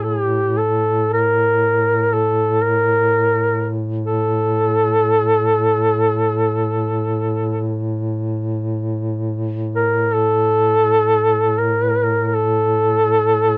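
Mournful and solemn, this short cut from a longer Caucasian lament unfolds in free time, with a mellow duduk up front singing a vintage-toned melody between G4 and Bb4, full of vibrato and scooped notes. A second duduk, smooth on top and sitting lower in the mix, holds a drone on A2 with its own vibrato and scooped notes, both parts sounding together from 0.0 to 13.6 seconds. The dry, close 1970s-style studio sound keeps the folk playing intimate and direct.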